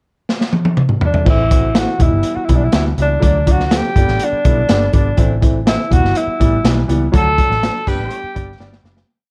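A breathy tenor saxophone with light vibrato and tape echo carries a motif-based jazz-style melody over this passionate, driving uptempo 1960s-style soul piece in A dorian at 123 BPM. It rides on a crunchy, gritty breakbeat drum kit that opens with a fill at 0.3 seconds before settling into a backbeat soul groove, a round, foam-muted electric bass playing a syncopated line with ghost notes and chromatic approach notes, and a woody upright piano comping in eighth-note chords with grace notes. A horn section joins at 7.1 seconds to punch out the phrase ends as the band accents and fades out, all in a dark, warm production with light reverb.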